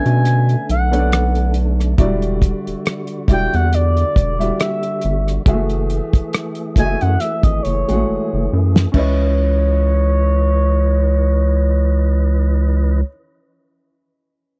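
A lightly swung 69 BPM groove in 4/4 from a cloth-damped, thuddy drum kit with a fat snare and dark cymbals, which plays a fill at 8.1 seconds and stops at 9.2 seconds, anchors this smooth, introspective neo-soul R&B excerpt in C# phrygian; a rubbery, bouncy square-wave bass sits up front, a tonewheel organ holds fat sustained chords through a slow rotary speaker, an expressive, soft-attack synth lead sings the melody with chorus and slapback echo over Bm9, Em9, F#m9 and C#m9, and a woody upright piano carries on alone to 14.6 seconds, captured in a dry, close 1970s-style small-room sound.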